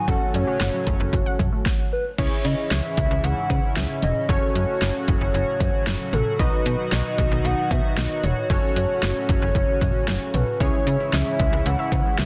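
A straight pulse from a punchy, up-front deep house drum kit drives this nocturnal, cool synth-pop fragment, its fat snare, kick, hi-hat, toms, cowbell and crash cymbal sitting alongside a snappy FM bass with a metallic, slap-like attack. Over the top, a hollow, woody lead with a soft vibrato carries the melody through chorus and tape echo, mellow and sustained. Round, detuned analog keys fill in the accompaniment with a filter sweep and chorus, while a shimmering, retro pulse-width pad holds bright sustained chords underneath. A warbly, dusty pluck with a nasal, lo-fi edge adds arpeggios in the background, appearing briefly at the start and returning at 10.6 seconds, bathed in chorus and tape echo. The harmony moves through F#m, C#m and B under light reverb, and the mix is dense and heavily limited in a modern way.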